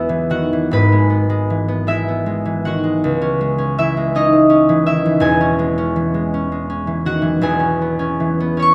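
Dreamy and peaceful, this brief classical excerpt for solo concert harp drifts at a slow, rubato 54 BPM in a lilting 6/8, its bright, ringing fingerpicked tones sitting up front and spanning a deep low register to a high sparkle as the harmony moves from E through C#m to a closing C#m7/E, all heard through close, detailed microphones in a recital hall with a gentle bloom of reverb.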